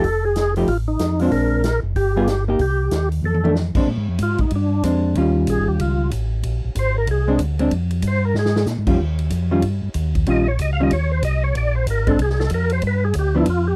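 A brisk, swinging, bluesy soul jazz organ trio excerpt opens with a fat, lightly overdriven tonewheel organ carrying the melody with key click and slow rotary speaker, a dark, clean hollow-body electric guitar comping up front, a round, mellow second organ holding the bass line with chorus vibrato and its own slow rotary speaker, and a natural acoustic kit with a boomy kick whose fill at 3.2 seconds leads into the lead organ's solo from 3.9 seconds, all in a dry, close 1970s-style studio sound.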